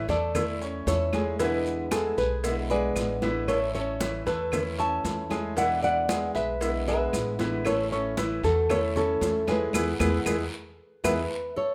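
A thumb-plucked nylon-string guitar carries the melody in this relaxed, sunny Cuban son and guajira excerpt, over a background flamenco guitar line with audible finger squeak, a dark, boxy fingerpicked old ladder-braced acoustic guitar, brilliant, short-sustain grand piano arpeggios, a thumpy gut-string pizzicato upright bass, background percussion of ringing congas, a tight high-tuned cowbell, woody claves and raspy guiro, and grainy maracas, in a moderate large-studio reverb, with a band accent at 9.7 s.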